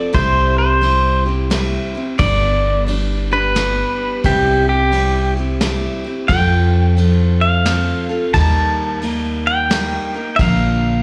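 Honky-tonk and classic country in a swung three-four waltz feel, heartfelt and nostalgic, heard as a live gig through the venue's PA with club reverb and small-room ambience. A twangy, bright pedal steel carries the melody up front with fingerpicked slide lines, volume swells and slapback echo, over a full-bodied picked dreadnought acoustic guitar that shares the slapback. A woody pizzicato upright bass and a dark, rolled-off brush kit with a punchy kick settle the groove as the chords move from C and G to F, then drift to Eb around 8.3 seconds and Bb near 10.4 seconds.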